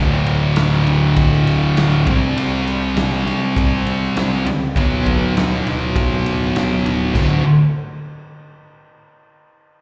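A straight, steady 4/4 pulse drives this raw, rowdy garage rock excerpt. A thick, double-tracked fuzz guitar riff sits up front, moving through D5, C5 and Bm/D over a growling, overdriven picked bass, and a gritty, saturated drum kit with a punchy kick, medium-tuned snare, crash and ride joins at 0.3 s. It sounds like a live gig heard through the venue's PA, bathed in a lush hall reverb, while the dark, rolled-off drums carry the sound of a bright stone room.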